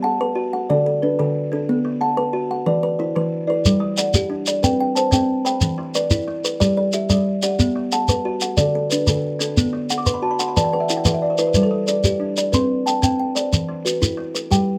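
Two kalimbas open together in a hypnotic, interlocking mbira-style cycle of arpeggios at 122 BPM in a straight 12/8 and G major, one woody and hollow-boxed with a soft, dark fingertip pluck, the other ringing and buzzing with a vintage, band-limited thumbnail pluck, before a grainy, close and dry shekere joins at 3.7 seconds and the first kalimba adds a fill at 9.8 seconds, all caught by detailed close microphones in light reverb in this fragment of a longer southern African traditional piece.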